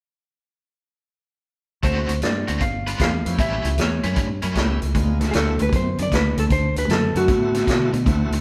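Electric blues shuffle at 154 BPM with a laid-back, gritty swing, where the full band comes in together at 1.8 s and moves through D7, G7 and A7 before settling into D mixolydian at 5.0 s. A dark, clean lap steel carries the slide melody until 7.9 s over an overdriven, picked stack guitar riff with tremolo, a round, direct fingered bass and a punchy, up-front vintage kit of kick, snare and hi-hat with a rolled-off top. Behind them, a shouting tonewheel organ with key click and slow rotary speaker sits in the background, and the whole band sounds live in a moderate stone room.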